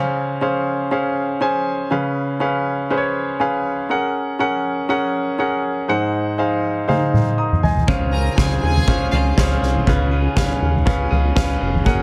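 A polished grand piano with deep bass opens this hopeful piano-driven pop excerpt alone, joined at 6.9 seconds by a roomy soft-mallet drum kit entering on a fill, then at 7.9 seconds by a glossy, retro chorused synth bass and a clean, phaser-tinged electric guitar riff set in the background, while a floating bowed violin section drifts in briefly at 8.1 seconds, the mix carrying light reverb and a dense, heavily limited master.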